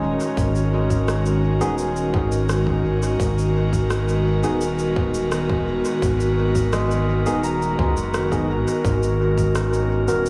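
A dreamy mix soaked in lush hall reverb, with a sense of studio ambience around it, opens this spacious, meditative slice of ambient dub, cut from a longer piece. It sits at 85 BPM in 4/4 with a straight feel, in G# minor, resting on a single G#m9 chord throughout. An airy, breathy pad with chorus sits up front, holding sustained chords with a slow attack and long release, while a deep, round analog bass with tube saturation and a dark, slightly nasal tone anchors the low end. Behind them, a ringing, fingerpicked concert harp spins arpeggios through a diffuse ambient delay, and a clean tine electric piano enters at 1.6 seconds with background stabs coloured by vintage 12-bit sampler grit and dub echo. The rhythm comes from a tight, tape-warm electronic kick drum, re-recorded in a large room, and an electronic shaker and rim click trailing dub echo.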